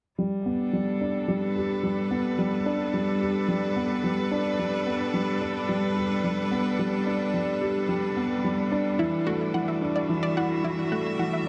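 A felt-muted upright piano leads this tender, luminous electronica excerpt, playing a mellow, intimate riff through a low-pass filter with delay while a filter sweep runs across its full span. Its soft tone sits up front, and the audible action noise keeps it natural and close. Alongside it, a string quartet of one bowed player per line holds sustained chords with rich vibrato and a focused chamber sound. The harmony rests on Gadd9 in G major at a straight 109 BPM in 4/4, shifting to Dadd9 at 9.0 s. At that same moment a detuned sawtooth unison pluck enters with fast-attack, decaying arpeggios, its lush, punchy, full-bodied tone colored by cassette tape and delay. The whole passage floats in a wet scoring stage reverb blended with a small room, giving the fragment a glowing, spacious air.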